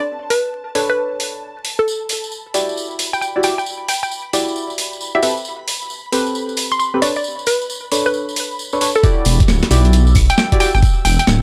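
A swung two-step garage shuffle drives this moody, soulful UK garage piece, where a gritty, overdriven breakbeat kit of claves, hi-hat and snare and a jingly tambourine back a hollow, bouncy square-wave pluck melody with chorus and tape echo, soft dark chord stabs and an ethereal pad pumping in the background over Bm9, Em9 and Am9 chords, until the drop at 9.0 s brings in a knocking electronic kick and a rumbling detuned saw bass, on a dry recording dusted with vinyl crackle.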